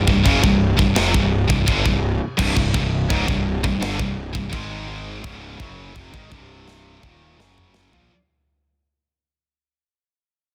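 Aggressive and dark, this short heavy metal excerpt grinds along at 84 BPM in 4/4 with a straight feel, rooted in C phrygian and tuned slightly sharp to A4 = 441 Hz. Two bright, picked high-gain guitars share a low distorted riff from the start, sitting back in the mix, and a third double-tracked distorted guitar joins the riff at 2.4 seconds. Up front, a fuzzy, overdriven picked electric bass growls deep underneath, direct and amped. A tight, mid-forward acoustic drum kit with a big-room character drives the piece with a tight kick, a medium-tuned snare, toms, crash and china cymbal, closing with a drum fill from 6.7 seconds. The harmony moves from C power chords to Ab and then C minor, all inside a dense, heavily limited modern master with little reverb, and the whole passage is heard as a fade-out cut from a longer piece.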